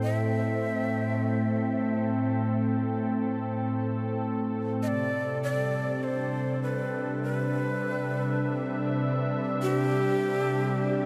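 Ambient music at a slow 50 BPM in 4/4, this melancholic yet serene passage is cut from a longer piece and runs 11.1 seconds. A warm analog pad holds sustained chords from start to finish, its detuned sawtooth and triangle tones smooth and vintage, with a soft attack, long release and a subtle chorus that gives it a gentle warble; it sits up front in the mix. Over it, a close-miked bamboo shakuhachi carries the melody between G4 and E5, its end-blown sound breathy and bright, with a crisp, chiffy attack, vibrato and an analog delay trailing behind. The harmony moves from Am7 to Cmaj7 at 4.8 seconds. A huge ambient reverb with an 8.0-second decay soaks the whole mix, leaving it dreamy and drenched.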